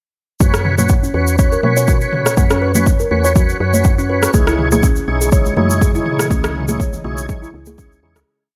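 Set in a digital ambience, this complete afro house piece has a hypnotic, earthy mood and a lightly swung 4/4 groove. An overdriven, up-front electronic kick drives a four-on-the-floor pulse, joined by a layered deep house kit with programmed hats, backbeat, rim clicks and mid toms, while soft-handed vintage congas interlock in the background and a grainy egg shaker plays hand-played sixteenths. A round, dark FM bass with a woody tone lays down long gliding notes, pumping against the kick. A mellow kalimba with a hollow-box pluck repeats a 12-step arpeggio loop that drifts against the bar, and a full, lightly overdriven tonewheel organ adds close-voiced, dotted-rhythm stabs through slow rotary speaker and chorus vibrato, both parts trailing dub echo. At 5.2 seconds an ethereal, airy pad enters quietly in the background with slow-attack sustained chords, colored by ensemble chorus and phaser, as the piece fades out from 5.7 seconds to its end at 8.3 seconds.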